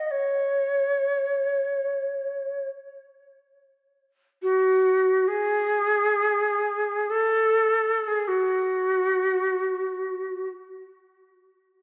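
World meditative music in free time and F# minor, this haunting cut from a longer piece features a solo Native American-style cedar flute, woody and airy with vibrato and tongued notes, ranging from F#4 to D#5 and sounding until 10.5 seconds, its tape echo set in a wet scoring-stage reverb with a 1.6-second decay.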